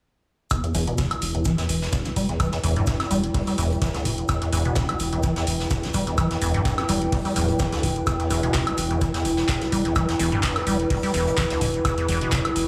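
Gritty and hypnotic, this swung acid house excerpt rides on an up-front, squelchy square-wave acid bass riff with overdrive, tape echo and a filter sweep, a deep tape-warm electronic kick, a booming analog drum machine with metallic hats, handclaps and woodblock, an airy brushed jazz kit with a high-tuned snare in the background, a thick saturated sine sub bass entering at 0.7 seconds, and a dark, nostalgic, warbling pad under an echo-heavy studio sheen.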